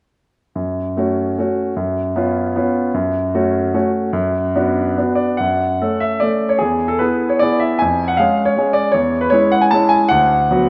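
Dotted rhythms drive this romantic triple-time dance in 3/4, moving at 137-164 BPM with a supple rubato that lets the pulse breathe. A solo grand piano carries the whole piece from 0.6 s to 10.7 s, its clear, smooth and vintage tone ringing with long sustain and sitting up front, spanning D2 to A5. Set in F# minor, the opening phrase circles between F#m and C#7 over an F# bass before settling toward Bm, and a second phrase arrives at 5.4 s, shifting through E, C# and C#m harmonies to close on Bm. A moderate scoring-stage reverb gives the piano a soft halo, while the recording itself carries the worn, warbly pitch drift of old cassette tape. The effect is wistful and nostalgic, like a faded keepsake cut from a longer piece.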